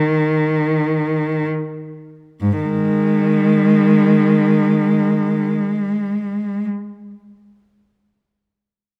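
This classical fragment for unaccompanied cello unfolds in free time, meditative and lonely, tuned to A4 = 436 Hz, with the opening slowing down over its first 2.4 seconds. A single bowed cello sits up front from the start until 6.7 s, ranging from G#2 to G#3 with a rich, focused tone, vibrato and a smooth top. Close, detailed microphones capture the instrument within a moderate scoring-stage reverb.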